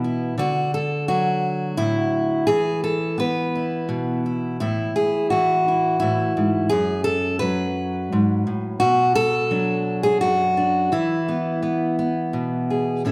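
Folk solo fingerstyle piece in a three-beat metre, gentle and peaceful, where a fingerpicked steel-string acoustic guitar with warm tone, fresh strings and audible finger squeak sits up front in a generous recital-hall reverb, moving through D, E5, A5, F#m, Bm and E across this short excerpt.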